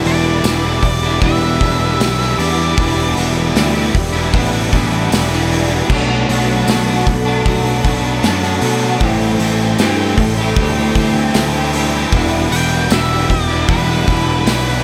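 An up-front fuzz bass drives this hazy, dreamy shoegaze excerpt at 77 BPM in E minor, moving through Em7, Bm7 and Am7 beneath a loose indie drum kit with dark cymbals and a pumping small-room sound, a jingly tambourine in the background, a biting overdriven guitar riff with ensemble chorus, a clean electric guitar riff treated with reverse reverb, shimmering octave-doubled twelve-string acoustic arpeggios and very quiet, warbling vintage string-machine violas, while a dark octave-fuzz lead guitar with delay carries the melody from 0.1 to 3.1 s and returns at 12.5 s, the mix soaked in church reverb.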